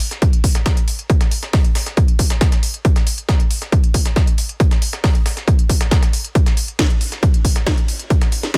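This industrial, relentless techno excerpt in 4/4 at 137 BPM opens with two layered drum kits playing hi-hat and snare together: a techno kit with a cracking snare and smooth hats, tape-warm and re-recorded in a small room, whose hats and cymbals pump against a sidechain, and a quieter, gritty, compressed sampler-style breakbeat kit whose high-passed, medium-tuned snare and filtered, pumping hats add texture underneath. At 0.2 seconds a heavy electronic kick drum enters, sitting up front in the mix with the same small-room, tape-colored character. A digital ambience surrounds the parts, and all three drum layers drive steadily to the cut at 8.6 seconds.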